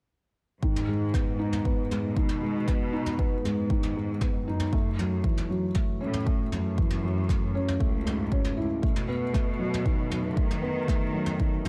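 A felt-muted upright piano, a bowed cello section and an overdriven electronic kick all arrive together at 0.6 seconds in this intimate, melancholic piano-and-strings electronica piece at 117 BPM in 4/4. The soft, boxy piano riff sits up front with audible action noise and a delay, while the lush, vibrato-rich cellos carry the bass line with sidechain pumping over chords moving from G#m to F#m7 to B7. The deep, layered kick drives from the front, and distant, roomy brushed toms with a rolled-off top join at 0.8 seconds, all within a light studio reverb in this brief cut from a longer piece.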